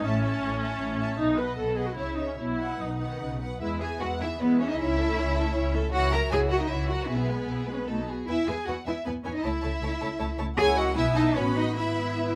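This lively, spirited excerpt from a quick classical-period movement for string orchestra has a close studio sound with light reverb. In 3/4 at 140-160 BPM with a rubato feel, it sits in E major and moves from an opening section to a second passage at 3.6 seconds. The violins carry the melody with a smooth, even, lush tone and vibrato, while a second violin line adds expressive portamento. The viola section fills in the accompaniment with a focused, bowed sound, and the cellos, the most prominent of the strings, add a lush bass line that climbs fairly high. Beneath them the double bass section sits up front with a rich, even tone, and all five parts play together from start to finish at 12.4 seconds.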